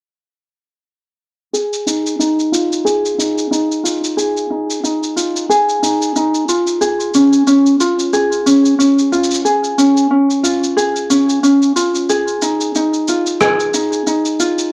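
A light, thumb-plucked acoustic ukulele sits up front, playing arpeggios between Db4 and Ab4 from 1.5 to 14.7 seconds, its tone shaped by a low-pass filter, an analog delay and a filter sweep that runs through the whole passage. This short folktronica piece, cut from a longer work, moves at 91 BPM in 4/4 with a gentle 56% swing on the sixteenths, and its mood is delicate and wistful. Beneath the ukulele, a sampler-style electronic shaker and rim click keep time at a lower level, sounding compressed and muffled after being re-recorded in a large room. The harmony stays in F minor, moving from Fm7 to Db and back to Fm7. A damp booth ambience and the soft grain of a home cassette recording give the whole passage an intimate, homemade feel.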